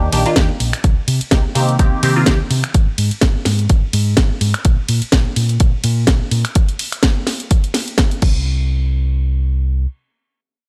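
A punchy, tape-toned electronic kick drives this groovy, nostalgic slice of filtered disco house, alongside a house kit with a cracking snare, finger snaps and hi-hat, crash and ride cymbals that pump from the sidechain, a dark, round fingered electric bass with tube saturation that runs until 9.8 seconds, and a funky, detuned sawtooth polysynth comp with chorus, phaser and 12-bit sampler grit that sounds only until 2.4 seconds, in a dry, gritty hardware mix.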